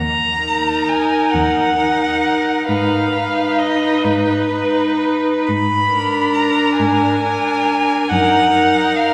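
In a rubato 6/8 metre, this solemn, melancholic slow movement for string quartet, cut from a longer piece, opens with an expressive, up-front violin singing the melody with vibrato and portamento over a soft-attacked, close cello bass that also glides between notes, joined at 0.4 seconds by a focused, smooth-topped second violin line and a rich, vibrato-laden viola accompaniment, the quartet bathed in a long, wet church reverb.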